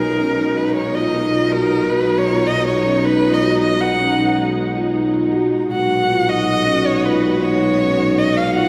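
This contemporary instrumental chamber piece, cut from a longer work, moves at 158 BPM in an uneven 5/4 meter with a straight feel, set in B lydian and carrying a playful, shimmering mood. An up-front single violin carries the melody with expressive vibrato and portamento. A woody marimba with medium mallets plays arpeggios in a narrow middle range. Beneath them, a lush, distant string section holds sustained chords, and a warm tuba with light vibrato anchors the bass on a low B. The harmony rests on B6 before shifting to F#add9/B at 5.7 seconds. A cathedral reverb with a long tail places the ensemble in a church or concert hall.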